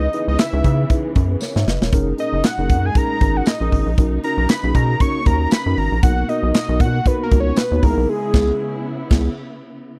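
A fat, detuned analog synth lead solos through phaser and slapback echo across this danceable, feel-good early-eighties boogie funk excerpt at 117 BPM with swung 16ths. It rides a rubbery, bouncy square bass, a mellow tine electric piano, lush bowed strings set distant in the background, and a polished drum kit with crash cymbal, handclaps, hi-hat, tight kick and snare, which plays a fill at 1.4 seconds. A very quiet jingly tambourine joins them as the music moves through C#m7, F#6/9 and Bmaj9 before a band accent at 8.1 seconds, all in a dry, close 1970s-style studio sound.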